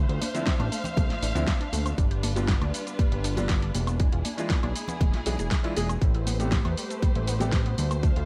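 Nu-disco with a sensual, cosmic mood, this short cut from a longer piece sets dark, lush bowed strings with sidechain pumping over a fat, detuned sawtooth analog bass up front, while a punchy electronic kick, a pop kit of fat snare, warm hats, cabasa and woodblock, background congas with hard hands, a clear but boxy grand piano with delay, and a wave-folded, ring-modulated unison pluck arpeggiating in the background drift through Dm9, G7, E7b9 and Am9.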